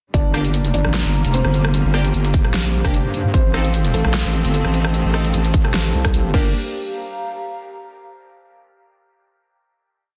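A half-time groove at a swung pulse drives this short, menacing piece of heavy wobble dubstep, with a punchy, layered electronic kick treated with studio reverb punching through alongside a big-room kit whose huge overdriven snare, metallic hats, rim clicks and crashes carry the same reverb. The wobble bass sits up front, a saturated, resonant mix of square and sine tones with chorus and overdrive, playing modulated phrases whose wobble speed keeps changing. Behind it, a felt-muted upright piano repeats a riff in octaves, its mellow, intimate tone and audible action noise trailing dub echo, while a lush bowed string section holds sustained chords that pump with sidechain compression. Sparse, rootless stabs from a bright, detuned orchestra-hit-like synth ring out from 0.3 seconds with reverb and echo, and a warbly, lo-fi tape-like pad with chorus fades in at 0.6 seconds to drift through slowly shifting chords. 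The drop moves from Gm to Adim and back to Gm, and after the other parts stop around 6.5 seconds the nostalgic pad carries the final chord alone to 8.1 seconds, all within a dense, heavily limited master and digital ambience.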